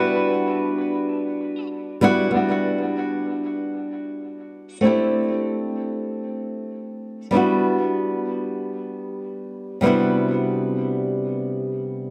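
A wet concert-hall reverb with a long 2.5-second tail surrounds this short chillout excerpt, cut from a longer piece, and gives it a spacious, wistful feel. Up front, a boxy acoustic flamenco guitar carries the accompaniment from start to finish at 12.1 seconds. It is fingerpicked in the flamenco manner, with audible finger squeak, and a low-pass filter and delay soften and trail its tone. For the opening 1.7 seconds, a clean, twangy electric guitar picks a brief melody on a single high B, with tape echo and set well behind the acoustic. The harmony moves through Em9/G, D9sus4, Em7 and a closing Cmaj9#11, and the mood stays warm and wistful throughout.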